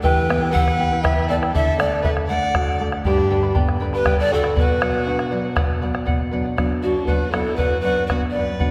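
A steady 6/8 pulse at 79 BPM in dotted quarters, anchored by a round, close and dry bombo up front, carries this melancholic, earthy Andean folk fragment in B minor, cut from a longer piece and moving through Em, D, G and Bm before shifting into a new section at 6.1 s. An airy, woody pan flute leads the melody with vibrato and tongued chiff, while a smooth, distant bowed violin adds a rich second line beneath it. A shimmering, fingerpicked charango with doubled strings and a bright, fresh-stringed classical nylon guitar fill out the accompaniment, and apart from the dry bombo, the ensemble is heard from further back in a wet scoring-stage reverb.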